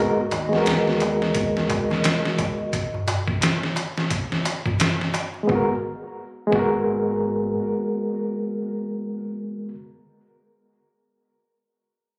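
Captured on a phone in the room and lightly washed in studio reverb and compression, this brooding, melancholic trip hop fragment in G# minor at 87 BPM, with a swung 16th feel, rests on an up-front, reedy, overdriven electric piano, pushed through a combo amp with tremolo and tape echo, playing accompaniment over G#m9 until 9.7 s, while a deep, detuned analog pad, dusted with chorus and 12-bit sampler grit, sustains only until 2.7 s above a round, dark dub fingered bass, a close, dry clay-shell darbuka, and a compressed, pitched-down sampler-style drum kit with a thumpy kick, medium-tuned snare and hi-hat that drops out at 6.8 s.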